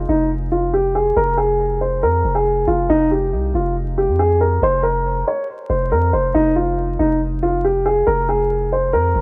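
Drill-flavored hip hop in a half-time feel, this short cut from a longer piece sets a dark, cold mood. A baby grand piano carries the melody from start to finish in a middle register; its tone is shadowy and mellow, with an intimate, natural character, short sustain and audible action noise, and a low-pass filter dulls its top end. Beneath it, a long sustained 808-style bass with a deep, sine-like tone, fast attack and decaying tail sits up front alongside the piano. The harmony rests on an F minor chord, falls away to an unharmonized stretch at 2.9 seconds and returns to F minor at 6.3 seconds. Light reverb and studio ambience surround the parts, while a worn, warbling old-tape coloring with cassette character, vinyl crackle and drifting pitch gives the recording a faded, lo-fi patina.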